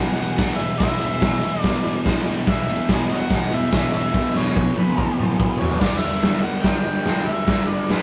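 A gritty, overdriven harmonica with light vibrato and tongue slaps carries the melody over a dark, double-tracked fuzz guitar riff and an up-front garage drum kit with a punchy kick and rolled-off top that enters at 0.2 seconds and plays a fill from 4.1 to 5.8 seconds, giving this raw, rowdy garage rock excerpt a rough rehearsal-room sound with tube saturation and moderate reverb.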